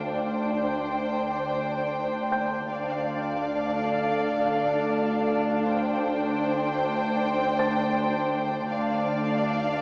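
An eerie, mysterious cinematic suspense cue at 80 BPM, cut from a longer piece, opens with a sul tasto violin section carrying a high melody over a second, floating violin line, a glassy, ethereal FM pad with ensemble chorus, and cellos, double basses and a deep rumbling drone holding a low D beneath Gsus4/D and Dm chords, until a soft, felt-muted upright piano adds a high, mellow texture in the background from 2.3 seconds, all heard from further back in a reverberant scoring stage with a small-speaker sound.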